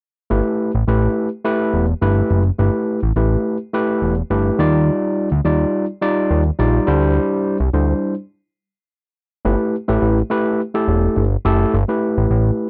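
A barky, overdriven tine electric piano and a fat, detuned analog bass with a filter sweep enter together at 0.3 seconds in this smooth, danceable early-eighties boogie funk excerpt, both up front in a dry, close room, moving through lush extended chords before a stop from 8.3 to 9.4 seconds and a new section that returns to the opening chord.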